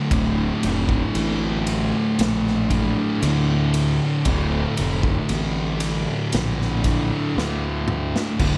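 Stoner and doom metal in a straight 4/4, this brief excerpt has a brooding, ominous mood. A thick, dark guitar sits up front from the very start, double-tracked and picked, its heavily distorted fuzz tone grinding out a riff in a low register that opens on a D5 chord. A fingered electric bass comes in almost at once, warm and growly, with an overdriven, direct-and-amped fuzz sound that fills the lowest octave beneath the riff. A raw garage drum kit, acoustic yet saturated and gritty, supplies a punchy kick, a medium-tuned snare, crash, ride and toms, all heard in a bright stone room that gives the kit a pumping quality. A drum fill runs from 7.4 to 8.4 seconds before the clip ends, and the overall mix carries little reverb.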